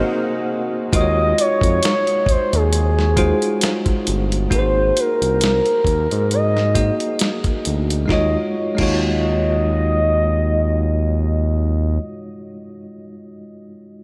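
Opening on an Ab9 chord, a gliding, detuned sine lead with chorus, vibrato and analog delay floats over a bell-like tine electric piano, an up-front sawtooth synth bass and a silky, very quiet string machine that stops at 0.9 s, when a gritty, tape-warm sampler-style drum kit with a thumpy kick enters and carries this sultry, soulful 67 BPM neo-soul R&B excerpt in Eb dorian, with lightly swung 16ths, until 9.0 s, inside a dreamy mix soaked in cathedral reverb.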